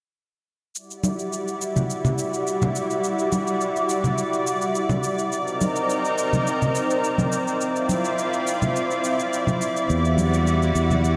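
Wistful and dreamy, this sunset chillout excerpt floats on a lush, detuned sawtooth pad whose thick, chorused chords move from Em9 through Cm9 and Dm9 before settling back on Em9. Soft-handed acoustic congas and a layered electronic cabasa patter beneath it, and the mix is soaked in a huge ambient reverb. At 9.9 s a growly, up-front fingered electric bass arrives on a low E for the closing moments.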